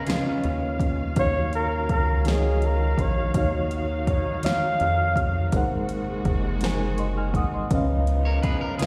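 Slow, sultry late-night R&B in 6/8 at 55 BPM in Eb minor: a reedy electric piano with fast tremolo and slapback echo carries the chords over a rubbery, hollow square-wave bass and an up-front electronic drum kit with a fat snare and metallic hats, while dark, veiled con sordino strings sustain in the distance; a twangy, slightly broken-up electric guitar with lush chorus appears only at the start and again from 8.3 seconds, and a breathy, mellow flugelhorn with vibrato, scooped notes and tape echo sings the melody from 1.2 to 5.3 seconds, all heard as a live gig through the venue's PA with recital-hall reverb.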